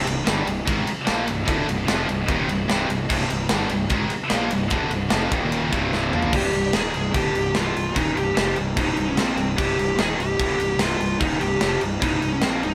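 Heavy and epic, this heavy metal cut from a longer piece drives at 148 BPM in a straight 4/4 in C minor, with the band sounding as if it plays live together in one room under a moderate studio reverb. Two bright, high-gain distorted guitars open on a low riff, the second sitting in the background until it drops out at 6.3 seconds, while a growly, fuzz-laden fingered electric bass with overdrive anchors the bottom. An acoustic metal kit sits up front with a tight kick, a medium-tuned snare and bright crash and ride cymbals alongside the toms. The harmony rests on C minor before moving through Eb5 and C5 power chords, and a drum fill at 5.9 seconds leads into the second half. From 6.3 seconds a dark, distorted lead guitar takes up the melody above the remaining riff guitar and rhythm section.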